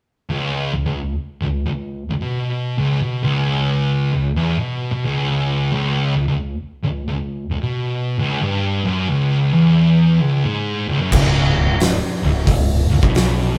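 Swung eighths in 4/4 carry this brooding, hypnotic stoner and doom metal piece, where two up-front fuzz guitars, one warm and one dark, grind out a thick distorted picked riff from 0.3 seconds, joined at 11.1 seconds by a bright, tube-saturated picked bass and an oversized, gritty drum kit with a boomy kick, fat snare and dark cymbals, the whole band playing live in one room under a wet, large studio reverb until the cut at 13.6 seconds.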